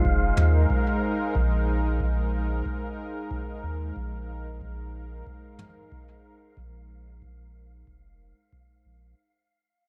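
An echo-heavy mix with light reverb and a small-room ambience gives this short cut from a longer ambient dub piece a hazy, deep atmosphere, and the whole passage fades out across its 9.2 seconds. Up front, a detuned sawtooth analog pad holds smooth, bright sustained chords on Ab, colored by chorus and tremolo, while a round, sine-based sub bass sits just as close and carries a filter sweep throughout. Above them hovers an airy, breathy wind-like noise layer on a single high note, dark in tone and bathed in its own reverb. An analog electronic kick drum with a tape-warm depth marks out the straight 4/4 feel. Distant, roomy toms played with brushes appear only briefly, at 0.4 and 5.6 seconds, their rolled-off hits trailing into dub echo.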